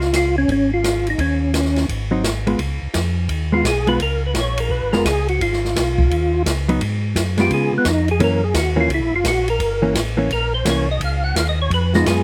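Soul jazz organ trio at a brisk 171 BPM in swung 4/4, greasy and soulful in Db mixolydian, cut from a longer piece. A percussive tonewheel organ with third-harmonic percussion, chorus vibrato and a slow rotary speaker carries the melody and launches a solo at 2.6 seconds, while a round, mellow second organ with key click holds down the bass under an acoustic drum kit of hi-hat, snare, ride and a boomy kick with dark cymbals. A compressed, fingered hollow-body electric guitar enters as accompaniment at 2.1 seconds, and the overall sound is dry and close, recorded in the open air.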